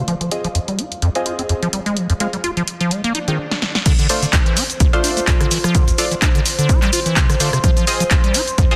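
A squelchy, hollow square-wave acid bass drives this raw acid house excerpt at 127 BPM in 4/4 with a 16th-note swing, its resonant filter plucks sitting up front, thickened by tube saturation and tape echo and pumping against the sidechain while a filter sweep moves across it through the first 3.9 seconds. Underneath, a moody, detuned sawtooth pad holds sustained chords from Fm7 to Dm7 and back in the background, its chorus and sidechain pumping giving it a mellow, breathing depth. A punchy analog drum machine supplies snare, handclaps, rim click, hi-hat, shaker and crash in a dry small room, while a nasal, band-passed chord stab cuts through with chorus, phaser and tape echo. A quiet electronic swell and a drum fill lead into the drop at 3.9 seconds, where a dry, up-front electronic kick drum lands beneath the groove. A brief woody marimba note on F4 appears at 4.9 seconds with tape echo, tucked into a dense, heavily limited mix lit by light digital reverb.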